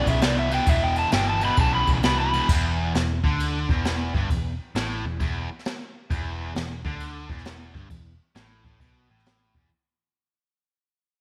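Blues rock and southern rock in a brooding, smoky power-trio setting, where an overdriven slide guitar with slapback echo takes a short solo until 2.5 seconds over a sludgy, bright, double-tracked distorted riff, a dark, round, foam-muted picked bass and an up-front brushed kit with a boomy kick, high-tuned snare and dark cymbals, all swinging in 4/4 inside an echo-chamber reverb before the trio fades out through 9.7 seconds.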